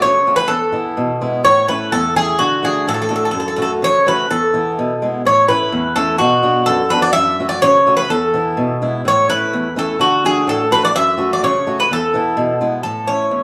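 This joyful, bright excerpt of Greek folk music opens with a Greek bouzouki and a fingerpicked acoustic guitar sounding together from the start, both up front in the mix. The bouzouki carries the melody in a middle register, its metallic double strings, some doubled at the octave, ringing with a brilliant, picked edge. Beneath it, the guitar supplies a boxy, swing-style accompaniment reaching down into the bass, with finger squeaks audible on the strings. At 126 BPM in a straight 2/4, the band plays live in one large studio whose wet reverb, lasting about a second, gives the sound a roomy bloom. The harmony stays in A major, moving through chords such as D, F#m, E and Bm across two passes of the same phrase, the second beginning at 5.2 seconds and resolving on A at 12.8 seconds as the clip breaks off from a longer piece.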